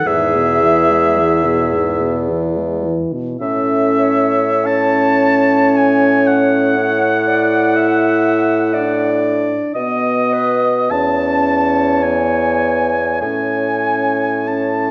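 Lyrical and serene, this excerpt of a slow romantic classical movement for wind quintet moves in a rubato 3/4 at 46-62 BPM in A major, with an airy, very quiet silver flute singing the melody with soft-attack vibrato above a warm, up-front oboe second line in the same register, a clear, close-miked clarinet and a mellow French horn filling the accompaniment, and an up-front bassoon carrying the bass, the five voices playing together throughout in a dark, reverberant recital-hall space.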